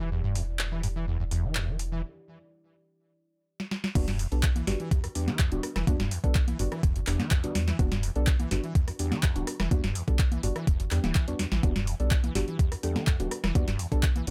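A squelchy, resonant acid bass riff with overdrive, cassette grit, chorus and delay pumps over a thick sub bass in this raw, trippy acid house excerpt, where a moody, detuned pad sits in the background until 2.0 s and the overdriven analog drum machine, with crisp snare, metallic hats, congas and claps, plays under a filter sweep through a short break, then the drop at 4.0 s brings a thumpy, up-front kick, soft, nasal chord stabs with chorus and delay, and brief flickers of a woody, rustic marimba.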